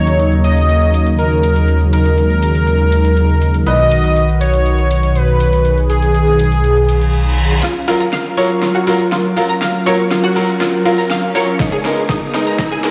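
Progressive house with an uplifting, expansive mood, opening on a thick, bold unison lead carrying the melody with dub echo over a smooth, detuned analog pad, filter-swept stabs from a brilliant, worn grand piano, a deep, rumbling detuned saw bass up front, and a deep house kit with a fat snare and metallic hats, with sidechain pumping on the pad, piano and bass. A very quiet reverse cymbal and riser enters at 6.9 s, and from 7.6 s a round, chorused analog pluck comes in with delayed arpeggios as the build-up brings a drum fill and a filter sweep on the pad. A punchy, overdriven electronic kick arrives at 11.6 s, all set in a large studio reverb that sounds played on a big sound system in a bare room.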